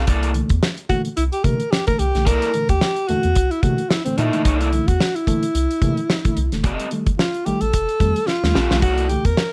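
A lightly swung sixteenth-note funk groove rides on a dry, up-front 70s drum kit with a fat snare and tight kick, under a round, deep analog bass and an overdriven, picked garage guitar, while a reedy, worn and slightly out-of-tune electric piano adds stabs through spring reverb. From 0.9 seconds a breathy, close-miked alto saxophone takes an intimate, whispered solo with vibrato, sitting up front in the energetic mix as the harmony moves from a dominant thirteenth to a ninth chord and back. A drum fill at 8.3 seconds leads into the return of the thirteenth chord near the end of this short excerpt, which carries light reverb and a layer of vinyl crackle.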